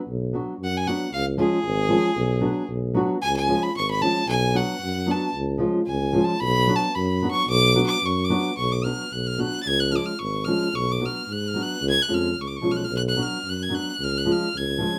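A moderate studio reverb gives this short cut from a longer Balkan folk piece a close, present sound, with all three players placed up front. The mood is restless and bittersweet, set in a lilting two-beat metre with a light swing. A mellow tuba carries the bass with a soft attack in a classical style, while a small, dark nylon-string guitar supplies thumb-plucked accompaniment. The clear violin takes the melody as a single bowed player, biting and intense with light vibrato and a smooth top, and it solos through the first section until 8.6 seconds. The harmony rocks steadily between B minor and C sharp across both sections, continuing until the end at 15.0 seconds.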